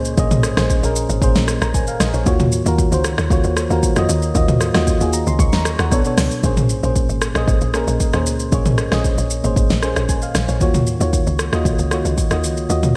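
An up-front deep house drum kit drives this soulful, late-night amapiano excerpt, with its deep kick, fat snare, smooth hats, rim click, shaker and toms carrying a gated reverb and a tape-touched feel. A round, dark FM electric piano with chorus plays minor ninth chords over a woody, punchy log drum bass, and the mix sits in light reverb with a bright 1980s-style digital sheen. The first 6.4 seconds form a drop before the second section begins, and the kick falls silent at 12.7 seconds.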